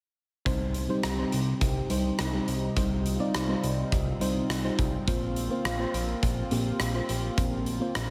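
A big arena sound wrapped in moderate, lush hall reverb frames this moody, dramatic slice of 1980s-style pop, cut from a longer piece and moving at 104 BPM in a straight 4/4 in C minor. A mellow FM electric piano carries the accompaniment with a soft, round, warbling tone, its vintage, full-bodied notes striking quickly and decaying under a chorus effect, with a faint noise layer beneath. A chorused pulse-width pad sustains chords with a slow attack, its detuned, shimmering retro texture sitting lower in the mix. A fat analog bass holds the low end with a thick, saturated, detuned blend of sawtooth and square waves, opening with a quick filter pluck before sustaining. The big rock drum kit sits up front with a punchy kick, hi-hat and rim click in a mid-forward, big-room acoustic sound. All four parts play together from 0.5 to 8.1 seconds over a Cm chord that shifts to Bbsus2 at 5.1 seconds.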